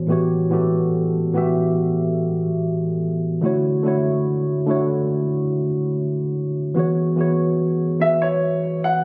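Smooth and romantic, this slow R&B passage at 72 BPM in 4/4 rests on a worn, slightly out-of-tune tine electric piano, clean and up front with analog chorus, moving through A13, Dmaj7 and E69 chords. At 8.0 seconds a polished, present grand piano with short sustain and digital delay carries a brief melody until the fragment ends at 9.0 seconds. The sound is captured on a phone in the room with light studio reverb and a muffled top end capped at 10.6 kHz.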